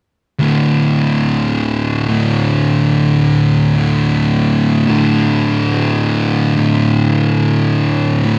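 From 0.4 seconds, two fuzz-drenched electric guitars enter together on a D5 power chord, opening a brooding, ominous slice of metal cut from a longer piece. Both guitars play a picked riff in a low register between D2 and D3, moving at a slow, heavy pace in a straight 4/4. One guitar sits slightly louder, while the second adds a thicker layer of distorted grit, and both stay up front in the mix. A moderate studio reverb gives the pair some room, and the production leans dark and warm. The riff runs until 8.4 seconds, when both guitars stop.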